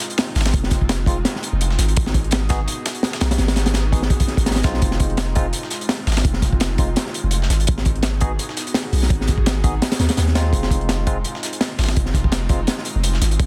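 Frenetic yet nostalgic, this drum and bass excerpt with a jungle edge pairs an up-front, crunchy breakbeat kit with a punchy kick and saturated, high-tuned snare against a dusty, tape-warm sampler kit in the background, while a deep, sine-like 808-style bass enters at 0.4 seconds beneath an airy, warbling pad with chorus and barky, lightly overdriven electric piano stabs carrying dub echo, all moving between Fm7 and Abm7 in a dense, heavily limited master.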